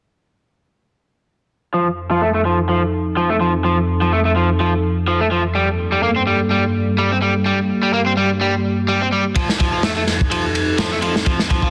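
Breakbeat with a playful, energetic lean, this clip from a longer piece runs in 4/4 with a lightly swung sixteenth-note feel. A warbly, tape-like pad holds sustained chords from 1.7 seconds, its detuned square and triangle tones carrying a nostalgic, lo-fi haze, with chorus, its own reverb and sidechain pumping. Entering at the same moment, a crunchy overdriven electric guitar plays a bright, picked riff up front, run through a low-pass filter sweep and digital delay. The harmony moves from F7 to Gmadd9 and back to F7. At 9.4 seconds a gritty, saturated acoustic drum kit arrives with a tight kick, medium-tuned snare and dark ride cymbal, sitting mid-forward with a rolled-off top. A moderate, lush hall reverb and small room ambience surround a dense, heavily limited modern master.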